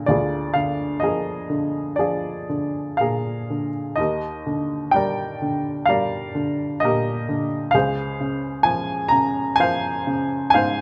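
Tender and calm, this short classical excerpt from a longer piece features a lyrical solo upright piano played with a flexible, rubato feel in 4/4. The piano sounds clear and woody, sitting up front with a present, short-sustained tone and a touch of light reverb, spanning from Db2 up to Bb5. Its harmony moves from Bb7/D to Ebmaj7 at 4.0 seconds and then to Dbmaj7 at 7.7 seconds.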